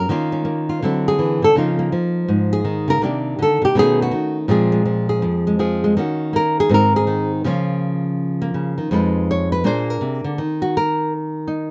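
Swinging and cool, this short excerpt from a longer solo jazz piece moves at 163 BPM in 4/4 with a relaxed swing, carried entirely by a fingerpicked nylon-string guitar sitting up front, its acoustic, classical tone marked by audible finger squeaks. The guitar works through rich extended harmony, from Ebsus2 and D9 into Db69, Cm9 and B9, then restates the opening section at 7.4 s, landing on Db6 before Fm7b5 and Bb7 give way to a chordless moment at 10.4 s. Light reverb and a dark production frame the instrument.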